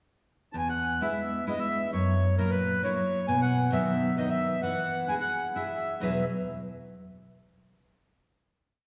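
A reedy, slowly beating accordion carries a motif-based melody of hook phrases up front in this lively, romantic Italian folk serenade in E major, a short, complete piece in 3/4 at 132 BPM with a rubato feel, while a bright, fingerpicked classical nylon-string guitar, finger squeaks audible, lays down an oompah of bass notes and chord figures, both playing from 0.5 s to 6.2 s over chords moving from E through F#7 and B to a closing Eadd9, all set in a wet concert-hall reverb.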